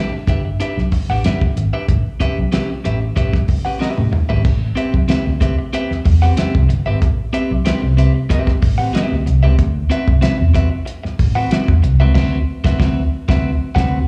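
A clean, picked electric guitar with slapback echo opens this hypnotic, sly funk excerpt at 94 BPM over Em7, and a foam-muted, round vintage fingered bass and a cloth-damped, thuddy drum kit with a fat snare, tight kick and dark cymbals join at 0.3 seconds as the harmony moves on to A9. A drum fill at 3.8 seconds leads into a longer stretch on Am9 and D13, where the dark, amped bass and the drums sit up front and the compressed guitar rides lower. The band hits an accent from 12.2 seconds, all heard as a live club gig through the venue's PA, with light reverb and a small-room ambience.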